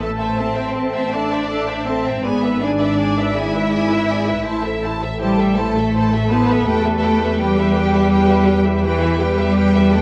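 An up-front cello section, clear and focused with vibrato, carries the bass of this serene, lyrical slow romantic orchestral movement in A minor, which moves at 55 BPM in a rubato 12/8 over a rich, smooth double bass section. A close, bowed violin section sings the melody above a second violin line set in the background, while the violas add warm, expressive accompaniment with portamento. The ensemble sits in a recital hall reverb and carries the warbling pitch drift of worn cassette tape in this passage cut from a longer piece.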